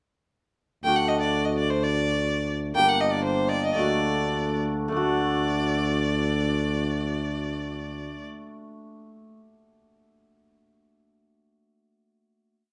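A large studio's wet reverb surrounds this short, festive yet bittersweet klezmer piece in 2/4, where a rich, up-front bowed violin sings an ornamented modal melody with vibrato over a shimmering, ringing hammered dulcimer playing off-beat triad chords and a mellow, soft-attacked tuba playing a quarter-note bass figure, the band slowing from 2.8 s as the harmony turns from D to G minor and back before a final chord at 4.9 s, with the dulcimer ringing on alone until 9.3 s.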